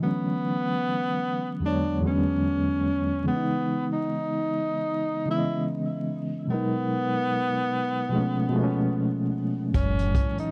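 Dreamy and cosy, this short lo-fi hip hop excerpt drifts at 74 BPM in 4/4 with a lazy swing on the sixteenths, its chords moving from Bm11 through E13, C#m9 and G#m9 to C#7b13 before settling on F#m7. A breathy tenor saxophone carries the melody up front, mellow and smooth-topped, with subtone, vibrato and scooped notes in a jazz style, softened by a low-pass filter. Beside it, a reedy, clean electric piano plays the accompaniment throughout, its medium tremolo giving the harmony a gentle shimmer under the same filtering. Only at 9.7 s do the other parts arrive: a woody pizzicato upright bass, a vintage brush drum kit with a punchy kick, hi-hat and a rolled-off top, and a dark, full-bodied string machine of cellos with a soft attack and ensemble chorus sitting in the background. The whole recording sits in a moderate studio reverb, with vinyl crackle adding a worn, homely texture.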